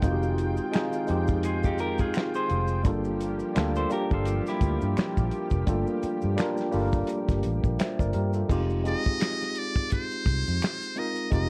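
A worn, warbling cassette-tape sound with light reverb frames this late-night, soulful neo-soul R&B excerpt at 85 BPM in F dorian, swinging over Fm9 and Gm9 chords. A slightly out-of-tune, lightly overdriven tine electric piano and a round, foam-muted fingered bass sit up front over a dry soul drum kit with dark cymbals, a fat snare and finger snaps, while maracas and handclaps stay in the background and a lush, detuned unison pad holds sustained chords until 8.5 s. A clean, picked electric guitar adds a second line between 1.4 and 5.5 s, and from 8.9 s a buzzy, close-miked trumpet with a metal mute takes a forceful jazz-style solo melody with vibrato.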